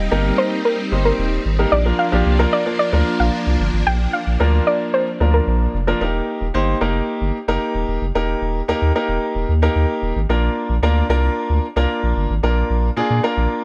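A thick, saturated sub bass anchors this upbeat, carefree pop excerpt at 112 BPM in Eb major, joined by a clear, open concert grand piano, a soft, round pluck melody with chorus and delay that stops at 5.4 seconds, and shimmering vintage string-machine violins holding sustained chords until the opening drop gives way to a new section at 6.0 seconds, where bass and piano carry on in a dry, close sound.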